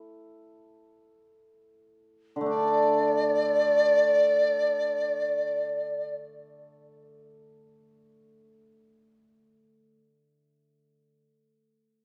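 In free time, this pastoral, graceful Chinese traditional chamber piece opens with a hammered dulcimer playing shimmering, ringing accompaniment that slows down over the first 2.5 seconds and carries on to the end. A mellow large dizi enters at 2.5 seconds with a pure, buzzing bamboo tone, holding a melody on D5 with vibrato and tongued notes until 6.1 seconds. A moderate concert hall reverb surrounds this graceful excerpt, tuned slightly high to A4 = 441 Hz.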